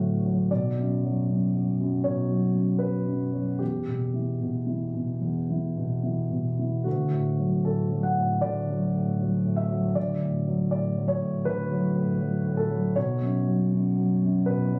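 Intimate and peaceful, this short cut from a longer neoclassical minimalist piano piece unfolds in D major at a loose, rubato pace of roughly 73-81 BPM in 4/4. A single concert grand plays alone from start to finish, its tone dark and mellow with deep bass, sitting up front in the sound. The harmony moves from D through Bm and Em, returns to D at 6.9 seconds, and arrives on a bare B5 at 13.0 seconds. The piano spans from B1 up to F#5. Captured on a phone in the room, the recording carries a light club reverb that adds a sense of space around the instrument.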